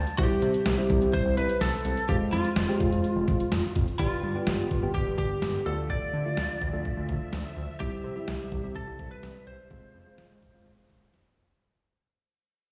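A soft, round synth-keys fill opens this nostalgic, bright synth-pop passage, joined at once by a fat, sawtooth analog bass with a filter sweep and a tape-warm, detuned 8-bit drum machine whose thumpy kick and medium-tuned snare sit up front. A twangy, slightly broken-up lead guitar carries the melody through tape echo, and at 4.1 seconds a mellow, vintage string machine with phaser and ensemble chorus adds sustained viola chords in the background as the music begins fading out. The whole mix sounds as if played over a big sound system in a bare room, wrapped in large studio reverb.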